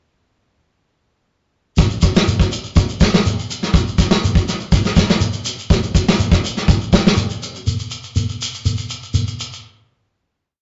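Driving and defiant, this short afrobeat groove pairs an up-front vintage brush drum kit, its punchy kick, medium-tuned snare and hi-hat sounding rolled-off and pumping in a small room, with a grainy, mellow shekere that carries on alone after the drums stop at 7.7 seconds, all captured as a rough rehearsal-room recording with tube saturation and a wet small-room reverb.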